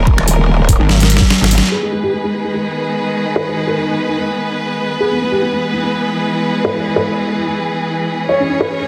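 Riding a half-time 4/4 pulse at 146 BPM with a slight swing on the sixteenths, this heavy wobble dubstep fragment in G# minor opens straight into a chaotic, menacing drop. A growling, distorted bass with a formant-filtered wobble and chorus snarls up front for the first moment, then gives way at 0.8 s to a pulsing, detuned pluck wobble bass, saturated and heavy, while an overdriven, knocking electronic kick and a layered dubstep kit of deep snare, bright filtered hats and finger snaps drive a drum fill before the kick drops out and the band hits an accent at 1.6 s. Alongside it all, a rich chamber string section holds bowed, vibrato-laden chords that pump against the sidechain throughout. From 1.7 s a soft, felt-muted upright piano carries the melody with a dark, boxy intimacy and a touch of delay, set over harmony moving from G# minor to E and then C# minor. A moderate room reverb and a dense, heavily limited modern master give the cut a tight, aggressive punch.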